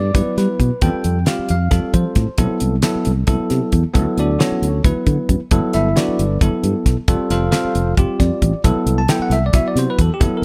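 A bell-like, clean tine electric piano and a growly, amped fingered bass open this slick, funky electric jazz fusion excerpt in a straight 7/8 at 268 BPM counted in eighths, joined up front by a dry 70s drum kit with a fat snare, tight kick and hi-hat, as chords move through Gmaj7, Fadd9, Cmaj7, Dmaj9 and Gmaj9 under light reverb, with a brief electric piano fill at 8.0 seconds.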